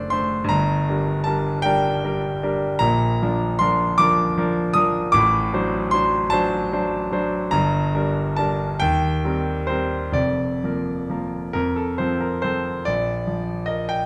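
In a rubato 6/8 lilt at roughly 42-54 BPM in dotted quarters, this serene, tender romantic nocturne for solo concert grand piano moves through Bb major harmonies such as Gm, D7/A and Cm7/Eb before settling on F and a closing Bb5 at 12.9 seconds. The piano sits up front with a clear, polished tone, deep bass and short sustain, ranging from F1 to Eb6. A wet recital hall reverb and a dark production surround this brief passage cut from a longer piece.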